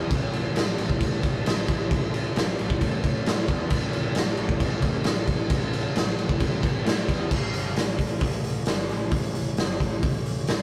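A straight 4/4 beat from a raw garage drum kit, its punchy kick, medium-tuned snare, hi-hat and crash sounding gritty and up front in a bright, pumping stone room, drives this rowdy, swaggering garage rock fragment, with a dark, round, fuzz-overdriven picked electric bass sitting lower in the mix and a new section arriving at 7.3 seconds, all captured as a rough rehearsal-room recording with light reverb and warm saturation.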